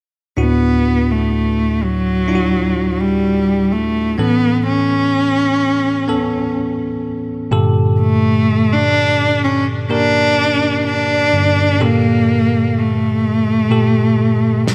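Tender and hopeful, this pop ballad excerpt moves at a slow 63 BPM in a straight 4/4, settled in D major. A single bowed cello carries the melody from 0.4 seconds, its rich, focused tone sung with vibrato and touched by a digital delay, sitting close and up front between F#3 and D4. Beside it, a tine electric piano supplies the accompaniment with a bell-like, bright and clean sound, direct and forward, ranging from D2 to Bb4. The harmony passes from Dadd9 to Aadd9 and then to a darker Gmadd9 at 7.5 seconds, lending a bittersweet shade to the otherwise open colour. At 14.7 seconds a fat acoustic snare drum lands once, up front with a small-room character, just as the cello and piano stop. Light studio reverb gives the whole a gentle sense of space.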